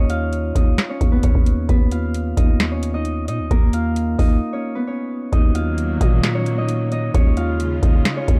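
A dark production with studio reverb frames this melancholic, hard-hitting hip hop and trap excerpt in Eb minor, moving at 132 BPM with a half-time feel. A ringing, thumb-plucked Celtic harp carries the melody through a digital delay, while a growling, buzzy 808-style bass with a fast attack and decaying tail holds the low end. A booming analog drum machine sits up front, its deep kick, crisp snare and metallic hats carrying a tape-warm character. After a break from 4.4 to 5.3 seconds, a lush symphonic string section enters at 5.3 seconds with bowed, expressive sustained chords, soft attacks and vibrato. The harmony leans on Db/Eb and Bbm/Eb before settling onto Ebm and returning to Db/Eb.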